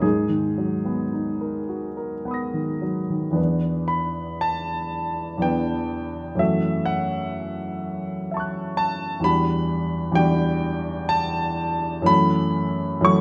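In a rubato 3/4 that drifts between 52 and 67 BPM, this hazy, nocturnal fragment of impressionist classical music opens in G# minor on a G#m9 chord before turning to E dorian at 3.4 s, moving through Em7, F#m7 and Em9. A solo grand piano carries everything from E2 to A#6, its tone warm and present, placed up front with long sustain. The dark production sets it in a moderate scoring-stage reverb with a 1.6-second decay.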